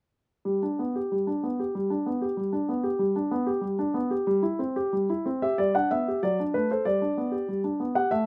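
A warm, natural baby grand piano with a short sustain, placed up front, plays alone from 0.5 s to 8.3 s in this elegant, graceful classical-period sonatina fragment in G major at 95 BPM in 2/4, shaped with rubato, tuned to A4 = 441 Hz and spanning F#3 to F#5 over G, C/G, D/F# and G harmonies, with a new section arriving at 5.6 s, captured by close, detailed microphones in light reverb.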